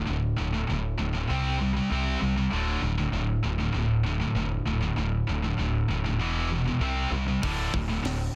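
Heavy metal at 98 BPM in 4/4, epic and aggressive, as two bright, scooped high-gain distorted guitars riff from the start over a dark, round picked electric bass entering at 0.1 seconds, moving through D5, C5 and E5 power chords until a tight, mid-forward drum kit with a high-tuned snare and a soft-clipped kick comes in at 7.4 seconds, all set in light reverb with a dense, heavily limited modern master in this cut from a longer piece.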